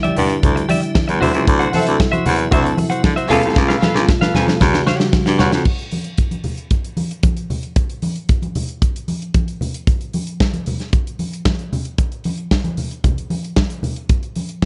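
A driving, glamorous disco groove at 114 BPM opens with a punchy, up-front drum kit with bright cymbals, thick-skinned congas, a clean hollow-body electric guitar and a piping tonewheel organ with key click and chorus vibrato, while a bright baritone saxophone carries the bass line with pop-style vibrato over Em7, D9 and C#7b13 chords. Lush bowed strings with tape echo sit in the background from 1.7 to 3.5 seconds, and a drum fill leads into 5.7 seconds, where guitar, organ and saxophone drop out and drums and congas continue alone. The production is dark and warm, with light small-room reverb.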